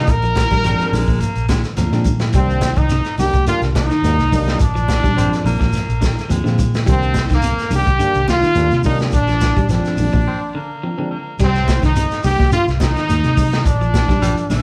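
A brilliant, forceful trombone leads this hypnotic, driving afrobeat excerpt at 106 BPM in C minor, with a bright trumpet and a raspy baritone saxophone adding second lines behind it, the sax dropping out at 6.7 seconds and returning at 10.3 seconds as a short break arrives. Underneath, a dark, round muted electric bass and a crunchy, saturated breakbeat kit with dark cymbals drive the groove, while ringing high-tuned congas and a grainy shekere sit in the background. A clean picked electric guitar plays arpeggios and a barky, lightly overdriven tine electric piano comps until 11.1 seconds over a Bb7 to Cm7 vamp, all in a moderate large-studio reverb that feels like a band playing live in one room.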